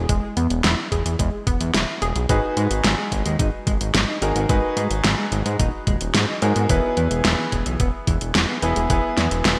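Synthwave at 109 BPM in 4/4 with a cinematic, nostalgic mood, this excerpt opens on an E chord with a round, detuned analog pluck playing chorused, delayed arpeggios over a fat, sawtooth analog bass, a thumpy sampler-style kick and a layered pop kit with a fat snare and warm hats under gated reverb, the kick dropping out from 1.7 to 2.3 s. At 2.3 s the harmony moves to G#m7 as the pluck stops, and a brilliant concert grand piano enters with up-front delayed stabs while a dark, clean picked electric guitar riff sits in the background, treated with lush chorus and delay. The chords return to E at 6.7 s, all within a lush hall reverb and bright 1980s-style digital production.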